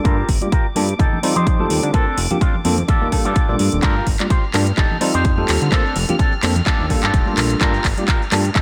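A punchy electronic kick drum, tape-treated and placed up front, drives this groovy, funky slice of filtered disco house at 127 BPM in G minor, with a 16th-note swing of 55%. A house kit adds handclaps and metallic hi-hats, the hats pumping against it, while a fat, detuned analog bass with a wave-folded, sawtooth edge and a filter sweep enters at 0.1 s, pumping and low-pass filtered alongside the drums. Above this, a bell-like tine electric piano carries the chords through a phaser, and a twangy, picked electric guitar riff runs through an envelope filter and 12-bit sampler grit. Quiet maracas and congas add live-room texture, and a bowed violin section with light vibrato sits in the background with earthy, high sustained chords. The harmony cycles Gm7, F9, Bbmaj9/F and Ebmaj9#11 over a continuous build-up, with a drum fill starting at 3.8 s in this short cut from a longer piece, all set in light digital reverb.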